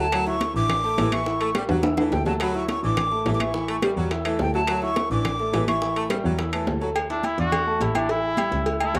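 A straight salsa groove in four rides on ringing metal-shell timbales and agogo bells, with tight bongos and cowbell and damped congas set further back, very quiet woody claves, and a drum fill around 1.7 seconds, all under a sunny, joyful vamp alternating between Dsus2 and A7. A breathy, chiffy jazz flute carries the melody over a punchy saxophone section line, a clear concert grand piano with deep bass and long sustain, and a smooth bowed double bass, until an up-front, vintage-toned trumpet takes a solo at 7.1 seconds. The fragment, cut from a longer piece, has the feel of a home cassette recording, soaked in wet spring reverb and small room ambience.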